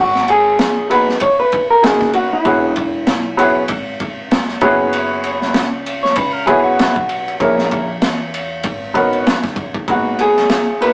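A swung, gritty breakbeat of kick, snare, hi-hat and dark ride sits up front in this nocturnal, cool jazz-hop excerpt, with a thumpy, woody pizzicato upright bass in the background and a worn, slightly detuned upright piano comping through minor-ninth and eleventh chords. A clean, dark hollow-body jazz guitar carries the fingered melody up front from the start, drops out at 3.5 seconds and returns at 9.9 seconds, while a second, slightly broken-up electric guitar with phaser takes a brief line between 6.0 and 7.4 seconds. The tight, rough rehearsal-room sound carries tube saturation, vinyl crackle and a small-speaker character.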